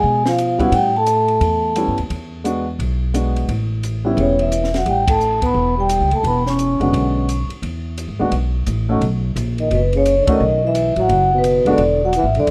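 A ringing, metallic vibraphone carries the melody in phrases at 0.0, 4.1 and 9.6 seconds over a breathy, distant trombone second line, a woody pizzicato upright bass, a present baby grand piano and a dark, smooth cocktail drum kit, giving this relaxed, swinging small-group jazz excerpt its shared band accents and rough home-demo feel.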